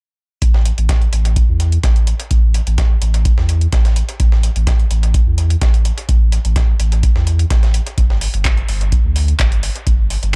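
A deep, dry analog kick drives this raw, gritty acid house fragment, with a round sine sub bass sitting up front from 0.4 seconds and pumping through sidechain compression. A booming drum machine adds handclaps and metallic hi-hats, while a quieter, pitched-up breakbeat kit contributes a compressed, tape-saturated snare and hats, both high-pass filtered, with the hats pumping and the kit splashed in dub echo. The mix is dry on reverb but heavy with echo, and the kick drops out at 10.0 seconds, just before the rest.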